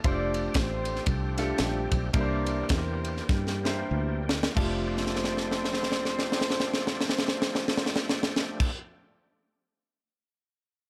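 A tight, up-front funk drum kit with a high-tuned snare and a tight kick drives this short, soulful and hopeful uptempo gospel cut, played with a swung feel and slowing down over its first 4.6 seconds, with drum fills at 3.3 and 4.9 seconds. A mellow horn section carries the melody in smooth, octave-doubled jazz style, over a round, foam-muted fingered electric bass, a clear, intimate baby grand piano with audible action noise, and a gritty overdriven tonewheel organ holding sustained chords in the background through a slow rotary speaker and chorus vibrato. The harmony moves from F69 to C9 and back, all set in light reverb.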